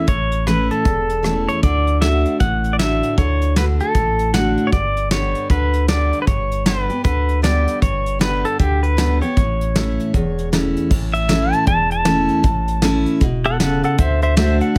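A swung 4/4 feel at 155 BPM carries this easygoing, heartfelt honky-tonk and classic country excerpt in A mixolydian, with a soft brush kit of fat snare, tight kick, rim click, hi-hat and dark cymbals in a small room, over a deep, thick, saturated sub bass beneath chords moving from A to D, G and back. A bright, full-bodied jumbo acoustic guitar, picked with audible finger squeak, sits up front beside a clean electric pedal steel played with fingerpicks, its slide and volume swells leading the melody before it steps into a solo at 10.9 seconds. Light reverb and close, detailed microphones keep the sound intimate.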